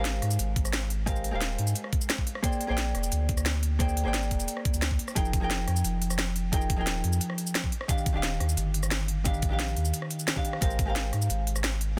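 A dark, clean hollow-body jazz guitar, picked and compressed and trailed by dub echo, carries the chords in this dreamy, melancholic liquid drum and bass excerpt at 176 BPM in F dorian. Beneath it a deep, round sine sub bass with a fast attack sustains under the harmony, moving from Abmaj13 to Bb13 before the passage repeats at 5.2 s over Fm11 and Ebmaj9, then back to Abmaj13. The layered, produced drum kit sits up front with a cracking snare, crisp hats, rim clicks and shaker. A knocking electronic kick enters at 0.6 s and stops at 10.9 s. Both drum parts were re-recorded in a small room, the overall sound is dry, and the master is dense and heavily limited, keeping the straight 4/4 drop driving for the full twelve seconds.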